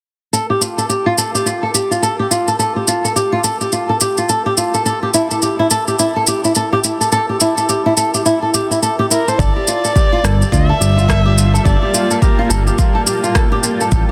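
Bathed in a huge ambient reverb and a dense, heavily limited master, this meditative, earthy organic downtempo excerpt at 106 BPM in G dorian swings its 16ths as a thumb-plucked flamenco guitar arpeggiates through a low-pass filter and digital delay over an overdriven electronic shaker and rim click. At 9.1 seconds a dark, airy-bowed kamancheh begins an intimate melody through delay, and at 9.4 seconds an up-front, smooth synth bass with tube saturation and a deep, overdriven electronic kick drum arrive alongside a very quiet, ringing bronze singing bowl, before a bright, cloudy granular pad with sidechain pumping enters at 11.2 seconds.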